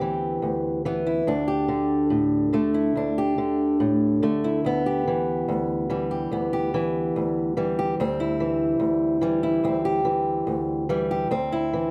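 Close, detailed and lightly reverberant, this reflective, wistful folk fragment features a single fingerpicked, ladder-braced acoustic guitar, dark, woody and boxy with the dull ring of old strings, played up front at a relaxed 72 BPM in 4/4 over suspended chords on a D bass, from D13sus4 through Em7/D and C/D to a closing D7sus2, ranging from D2 to G4 across its 11.9 seconds.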